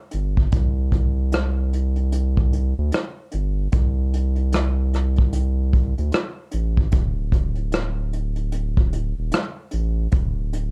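A deep, saturated sub bass with a sine-like tone and a fast attack holds sustained notes up front from 0.1 s to 10.7 s, spanning D1 to D2 in this reflective, hazy lo-fi hip hop excerpt at 75 BPM in 4/4, with a 62% swing on the 16ths. Alongside it, a vintage brush drum kit plays hi-hat, punchy kick and rim click in a small acoustic room, its smooth, dark sound having a rolled-off top. The production is dark, warm and dry with little reverb, and the whole is tuned to A4 = 441 Hz.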